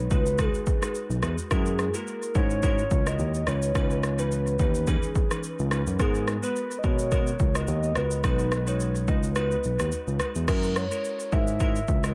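A soft, round synth lead layered in octaves carries the melody over glassy, detuned digital keys, both washed in chorus and dub echo, while a bright, barky tine electric piano holds down the bass and a punchy, gritty deep house kit of kick, rim click, shaker and crash drives this sunny, romantic afrobeats excerpt with a gentle swing, its kick dropping out from 9.4 to 10.5 seconds before a brief new section begins.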